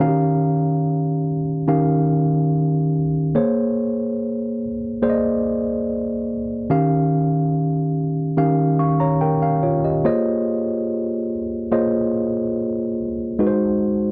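Soul in a smooth, bittersweet mood, this short passage cut from a longer piece features a tine electric piano playing entirely alone for its 14.1 seconds. The instrument has a worn, slightly out-of-tune character, and it sits up front with a clean, direct presence. Its part spans a generous register, moving through rich extended chords such as Eb9 and Bbm9 in the opening stretch. At 10.1 seconds a new passage begins, shifting to Bbm11 before landing on Ab7. The sound is dry and close, in the manner of a 1970s studio recording with little reverb.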